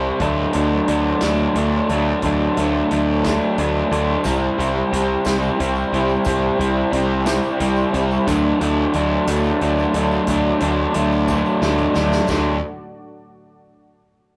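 A jangly, wistful indie rock passage in 6/8 at 60 BPM opens on a bright, crunchy overdriven guitar up front, a dark, slightly broken-up second guitar in the background, a fuzzed-out fingered bass, and a very quiet, moody analog pad holding sustained chords in D mixolydian, moving from D to C and back to D. A vintage acoustic kit with a punchy kick and medium-tuned snare comes in at 0.2 seconds, a jingly tambourine joins in the background at 4.2 seconds, and a drum fill arrives at 11.3 seconds. The rough rehearsal-room sound carries a moderate reverb, and the passage is cut from a longer piece.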